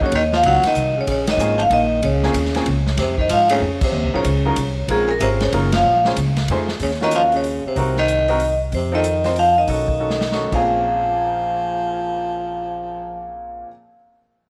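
A ringing vibraphone, played with medium hard mallets and the motor off, carries the melody through this cool, swinging jazz excerpt in 3/4 at 188 BPM in Bb minor, moving from minor seventh chords through F7#9, Cm7b5 and B7. Beneath it, a growling, raspy baritone saxophone plays a second line, a bright, slightly detuned upright piano comps, and a woody, thumpy pizzicato upright bass anchors the low end. A polished big-band drum kit with a punchy kick marks band accents at 1.2 and 3.8 seconds and plays a fill just before dropping out at 10.6 seconds, all within light small-room reverb.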